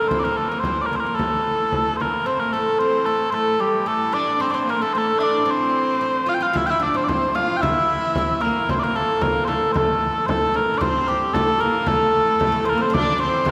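A straight 2/4 pulse at 112 BPM carries this ancient, mysterious medieval dance in A phrygian, where mellow, sweet small bagpipes sing the melody up front with vibrato, a clear, nasal, ringing viola da gamba with gut-string tone and a woody, deep, plectrum-plucked oud add second lines, a rich, reedy hurdy-gurdy holds a distant drone in the background, and a large frame drum played with soft hands sounds from 0.1 to 2.2 s before returning at 6.6 s, the whole excerpt set in wet church reverb.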